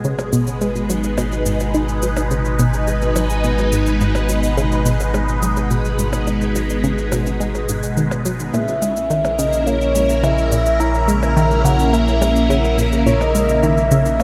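This cosmic, mysterious slice of sequencer-driven space music opens with a swirling, vintage string machine holding bright sustained chords up front, thickened by ensemble chorus and phaser. Beneath it, a nasal, detuned analog pluck repeats a riff through chorus, phaser and delay, with a filter sweep running over it throughout. A deep sine sub bass anchors the low end in a steady 4/4. Cabasa and electronic percussion blips sit low in the mix, their tape-tinged ticks scattered by delay. At 8.5 s the harmony shifts to a diminished chord as a soft, octave-layered synth lead enters with a full, dark triangle tone, vibrato, chorus and delay. A moderate plate reverb and heavy echo wrap the parts in a spacious, drifting haze.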